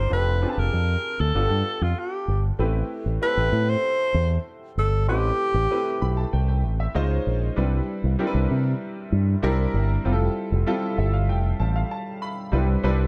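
A breathy alto saxophone carries the melody up front in a jazz style, its subtone shaded with light vibrato and scooped notes, until it drops out at 6.3 seconds. The piece is polished 1980s jazz-funk pop in a straight 4/4, with an urban, breezy mood. A fingered electric bass, bright and punchy through an envelope filter, sits prominently beneath. A clear baby grand piano with analog chorus supplies the accompaniment and adds fills from 5.7 seconds and again from 10.7 seconds, the second leading into a short break. The harmony moves through rich chords such as Am7, Dbmaj7 and Fmaj7 before landing on Cmaj9, all framed by light reverb and a dark production in this passage cut from a longer piece.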